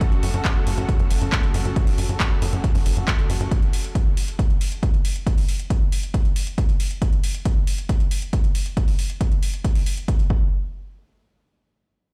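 Uplifting trance at 137 BPM in F# minor, this excerpt from a longer piece feels soaring and bittersweet. A lush, detuned unison pad holds a bright, chorused F# minor chord, pumping with sidechain, while a tight, nasal sawtooth sequencer bass with a plucky filtered attack drives underneath, joining just after the start and pumping in the same way. Both drop out at 3.5 s, leaving the drums to carry on alone. A dry, punchy electronic kick sits up front, and a layered big-room dance kit adds handclaps and metallic hi-hats, its hats, percussion and cymbals all pumping with sidechain. The kit stops at 10.3 s and the kick at 10.4 s, all within a large, reverberant ambience that sounds like a big sound system in a bare room.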